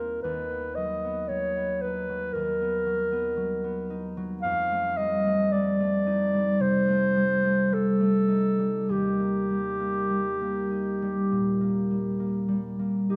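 A mellow, smooth-topped solo clarinet carries the melody up front in this dreamy, pastoral impressionist classical duo, while a ringing, fingerpicked acoustic concert harp supplies close accompaniment beneath it, the rubato phrasing unfolding in a dark production with moderate concert hall reverb in a passage cut from a longer piece.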